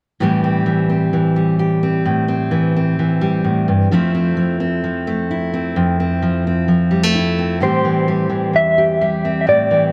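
Stirring and yearning, this indie folk excerpt moves at 129 BPM in a straight 4/4, set in A minor and tuned slightly below standard pitch. A fingerpicked steel-string acoustic guitar, a warm-toned dreadnought, carries the accompaniment from 0.2 seconds, sitting up front as it shifts from Am7 to Fmaj7. At 7.6 seconds a mellow electric guitar enters with the melody, dark and clean in tone, its fingered line shimmering through tremolo, plate reverb and tape echo. The electric's arrival marks the start of a new section and a return to Am7, building the arrangement as both guitars play on until the cut at 9.9 seconds. A moderate large studio reverb gives the pair a sense of space around them.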